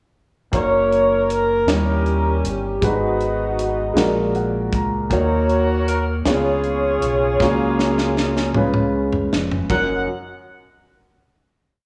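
A slow six-eight gospel groove at 52 BPM in F# major carries this short, soulful and uplifting piece, where a dark, vibrato-rich horn section sings jazz-style motif phrases up front over a woody upright piano playing quarter-note drop-2 chords with a short fill at 4.0 seconds, a round, punchy fingered electric bass with slides, and a tight acoustic funk kit with a high-tuned snare that plays a fill from 7.4 seconds, all colored by worn, warbling cassette tape and scoring-stage reverb before a final F#6 chord at 9.7 seconds.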